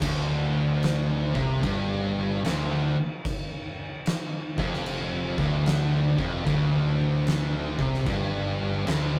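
Swung eighth notes in 4/4 drive this ominous, brooding stoner and doom metal fragment, cut from a longer piece, where an up-front, oversized low-tuned acoustic drum kit with a boomy kick, fat snare and dusky crash cymbals pumps through a big, gritty room beneath a brilliant, double-tracked tight distorted guitar riff, a punchy overdriven fuzz picked electric bass, a warm thick fuzz guitar in the background and a second, very quiet, shadowy thick fuzz guitar, all caught in a rough rehearsal-room recording with tube saturation and a moderate stone-room reverb.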